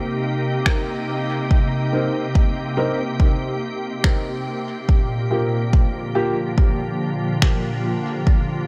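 Ambient dub at 71 BPM in C minor, hazy and deep, where a soft, organ-like pad with ensemble chorus holds sustained chords from Cm7 to Gm7 throughout, a deep, overdriven electronic kick sits up front from 0.7 s, electronic finger snaps carry dub echo, and a dark, woody upright piano drops in stabs with its own echo between 1.9 and 6.4 s, all in a short cut from a longer piece.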